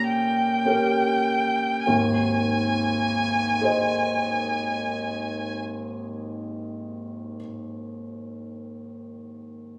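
This romantic classical duo for violin and grand piano unfolds in a serene, warm mood, its 12/8 metre stretched by free rubato. The opening bars slow down through the first 1.9 seconds before a new section begins. The violin, played by one bowed player, carries the melody in a narrow high range with a rich, smooth, even tone and light vibrato, sitting up front before it falls silent at 5.6 seconds. The grand piano supplies an intimate, natural accompaniment that spans from deep bass into the treble, its audible action noise adding close, tactile detail as it continues alone until 9.8 seconds. The sound carries moderate scoring-stage reverb alongside a club-like ambience and compression, with the roomy quality of a phone capturing the performance, and this short passage is cut from a longer piece.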